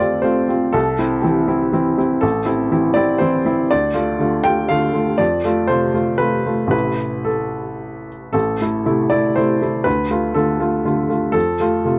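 A woody upright piano with audible action noise and short sustain plays alone and up front in this reflective, intimate neoclassical minimalist piece in A minor, moving in a rubato 3/4 at 121 BPM through F, C, Am and Dm chords, captured in a dry, close 1970s-style studio sound and cut from a longer work.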